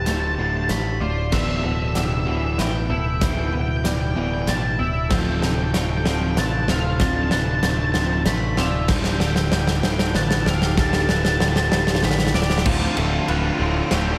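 A brooding, melancholic post-rock fragment in 3/4 opens on a fuzz-laden octave-fuzz lead guitar melody with analog delay, joined by very quiet slide chords with volume swells on pedal steel guitar, lo-fi, warbly arpeggios from an electric guitar through a small old amp, clean, twangy arpeggios soaked in chorus and delay, a dark overdriven guitar riff in the background, a bright, punchy picked bass up front and a big-room, mid-forward rock drum kit, the arrangement building through a drum fill until a cranked stack guitar riff with overdrive and chorus arrives at 12.7 s in a dreamy, reverb-drenched mix.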